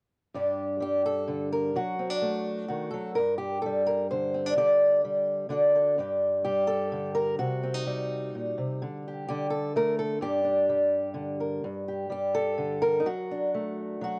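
Reflective and intimate, this short folk fragment, cut from a longer piece, features a single fingerpicked acoustic archtop guitar in a straight 3/4 at 128 BPM, in G harmonic minor, playing from 0.3 to 14.2 seconds across a range from G2 to D5. Its opening progression of Gsus2, D/F# and G5 moves through Dsus4, Cm7 and Gm before returning to the start at 11.6 seconds. The guitar sits up front with a warm tone and audible finger squeak, colored by cassette tape, a touch of reverb and the studio ambience of a home recording.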